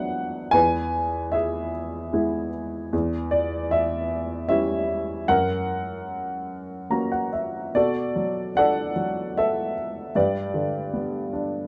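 A lone upright piano opens at once, its worn, woody, slightly detuned tone sitting up front in a small, dark-sounding room with moderate reverb, playing a melancholic classical piece in 3/4 at around 75 BPM with a free, rubato feel. The harmony moves from B minor through E, a diminished chord and F#, and a short piano fill at 6.5 seconds leads into a new passage that settles in B minor at 7.7 seconds, moving from Bm7 to G. This brief cut from a longer piece spans the piano's range from E2 to A#5 and ends at 11.7 seconds.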